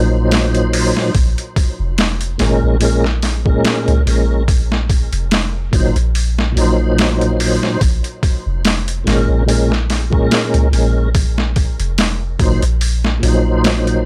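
A slow 72 BPM groove in 4/4 with lightly swung sixteenths sets a dark, brooding trip hop mood in Bb minor, as a round, sine-like 808-style bass and an up-front tonewheel organ open together and the boom bap sampler-style drums arrive at 0.3 seconds with a thumpy kick, high-tuned snare and hi-hat, pitched down, compressed and overdriven in a small room. The organ, lightly overdriven with chorus vibrato, slow rotary speaker, tremolo and tape echo, moves between a rootless Ab7 and Bbm7, while the deep, decaying bass sits underneath. The whole passage, cut from a longer piece, has a dry, gritty hardware sound with very little reverb.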